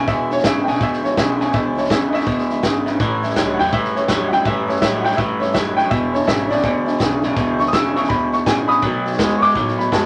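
A moderate club reverb frames this retro, rollicking rockabilly excerpt with a swung feel: a twangy, slightly broken-up electric guitar riff sits up front, a clear, intimate upright piano with audible action noise carries the melody, a bright dreadnought acoustic guitar and a thumpy gut-string upright bass play in the background, and a vintage drum kit with a punchy kick and a rolled-off top keeps time over E7, A7 and B7 changes.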